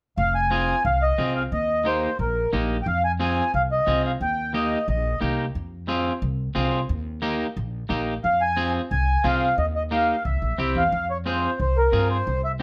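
Driving and fiery, this cumbia excerpt sets a reedy, mellow accordion melody, up front and pausing between 5.2 and 8.2 seconds, over a woody, thumpy pizzicato upright bass on gut strings and a twangy electric guitar at the edge of break-up, all moving through F minor and E-flat chords with a C7 turn before the phrase resets, in a moderate large-studio reverb.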